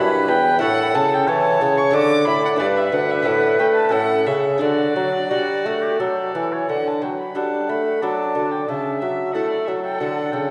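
In a straight 3/4 at 91 BPM, this baroque-style sonata movement with continuo moves in D major with a flowing, solemn character, cut from a longer piece. A single period-style violin carries the melody, up front and bowed, its dark, nasal gut-string tone carrying a reedy edge. Beneath it, a solo oboe plays the second line with a clear, close-miked sound, soft attack and gentle vibrato. A fingerpicked lute fills in the accompaniment with bright, delicate double nylon strings, some doubled at the octave, while a mellow, vintage-sounding bassoon holds the bass up front with a light waver in its tone. All four parts play throughout, the harmony settling from an opening Em7/G toward D before a new section begins at 6.7 s and closes on D at 10.0 s, all set in a wet concert hall reverb with a long 2.2-second tail.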